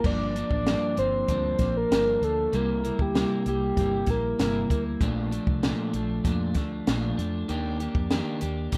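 A soft, detuned synth lead with a sub-octave layer sings a lonely, wistful melody over a slightly broken-up, picked electric guitar with a subtle chorus and vibrato, a round, foam-muted vintage bass and a compact cocktail drum kit with a punchy kick and high-tuned snare. This unhurried bedroom-pop fragment, cut from a longer piece, drifts through Gm7, C7, Bbmaj7 and Ebmaj7. The lead drops away at 4.8 s, leaving guitar, bass and drums in a rough home-demo mix with light reverb until 8.8 s.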